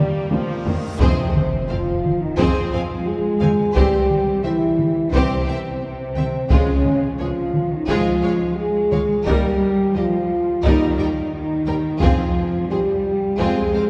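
Dramatic and heroic, this epic orchestral film-score passage, cut from a longer piece, opens with a drum fill, the taiko ensemble entering at 0.3 seconds, and a huge, dark reverse cymbal and sub drop that lands as an impact at 1.0 seconds, where timpani and a very quiet, distant trombone section join. Mellow, punchy French horns hold chords up front over a rich cello section and a focused double bass section, while a close studio violin section carries a second line beneath an intense, lush symphonic violin melody set in the background, and a viola section supplies the accompaniment. A wet church reverb surrounds the orchestra, and the timpani return at 12.0 seconds.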